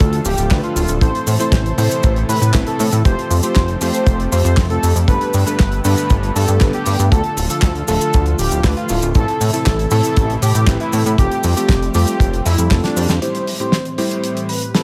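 A straight 4/4 pulse at 118 BPM drives this bittersweet, melodramatic italo disco passage in A minor, with a tight, dry kick up front and a damped 70s kit with a fat snare, hi-hat, handclaps and cabasa, while a glossy, nasal chorused synth bass with tube saturation plays beneath chords that move from Dm and Am through Fadd9 and Gadd9. A thick, bold unison sawtooth lead with vibrato carries the melody through subtle chorus, cassette tape colour and tape echo, as a clangy, vintage electric grand piano adds short stabs over a lush, warbling detuned pad in the background. The kick drops out as a drum fill arrives at 12.8 seconds and leads into a band accent, then the bass falls away as the pad takes a filter sweep over a closing C/A chord at 13.2 seconds, in a piece cut from a longer track.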